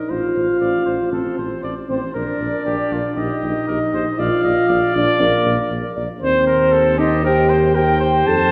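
Noble and warm, this brief passage from a longer classical brass quintet moves with a flexible, rubato feel: a vintage-toned trumpet carries the melody, while a distant, roomy flugelhorn sings a second line above it. Beneath them, a euphonium with light vibrato and a smooth top shares the accompaniment with a very quiet, soft-attacked French horn, and a mellow tuba anchors the bass through harmonies moving from F/A to Bb, Eb/Bb and Cm/Eb. A wet concert hall reverb places the ensemble further back in the room.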